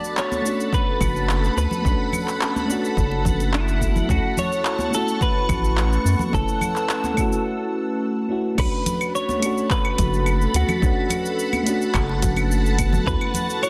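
This sunset chillout excerpt opens with a clean, picked electric guitar carrying the melody over a soft FM electric piano, both touched by chorus and tape echo, while a silky string machine holds sustained chords through a phaser and ensemble chorus. The mood is warm and smooth at 107 BPM in B minor, moving from Bm7 through Dmaj7 and F#m7. A deep house drum kit with claves, handclaps, hi-hat, shaker and crash cymbal plays from the start with an overdriven edge, bright high-tuned congas enter at 0.3 seconds in the background, and a punchy, layered electronic kick arrives at 0.7 seconds. A round, deep analog bass joins at 1.0 seconds and sits up front, dark and sustained with a fast attack. A short break falls between 7.5 and 8.6 seconds before the second section returns to Bm7. The whole is bathed in a lush hall reverb and mastered dense and heavily limited.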